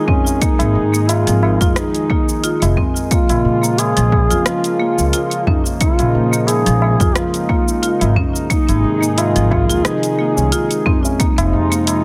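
Earthy and meditative, this 12-second excerpt of organic downtempo in Bb minor at 89 BPM with a light 16th-note swing sets a dark, vibrato-laden folk duduk melody with scooped notes over a smooth, warbling analog pad with chorus, sampler grit and sidechain pumping, bright woody marimba arpeggios struck with hard mallets through digital delay, a punchy overdriven electronic kick, a layered deep house kit of hi-hat, rim click and shaker, high-tuned close tabla in the background, and a growly pizzicato upright bass that enters at 0.6 seconds, all in a small room, moving through Ab5, Bbm7, Ab and Fm7.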